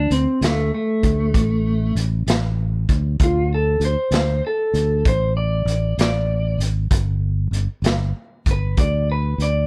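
In a straight 12/8 feel, this rollicking, gritty slow blues excerpt features an up-front, dark, clean and compressed lap steel guitar soloing with slide and volume swells over a round fingered electric bass and a raw garage drum kit of hi-hat, punchy kick and medium-tuned snare that sounds saturated in a pumping small room with a rolled-off top, the harmony moving from D5 to G5 at 6.9 seconds in a dry mix.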